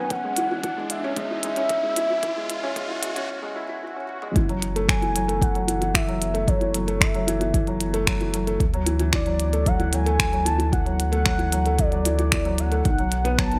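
Piano and strings electronica in F# minor at 113 BPM, hypnotic and moving, this excerpt builds with a riser until a break at 3.3 s, where a swell takes over before a drum fill at 4.1 s leads into a drop at 4.4 s. Throughout, a velvety, wave-folded synth lead with chorus and tape echo carries the melody over a felt-muted upright piano riff with audible action noise, a round sine sub bass with sidechain pumping, a deep layered electronic kick, and an overdriven, clicky minimal drum kit of finger snaps, hi-hat and toms, all set in a moderate scoring-stage reverb as the chords move from C#m through F#m7 and Dadd9 to B.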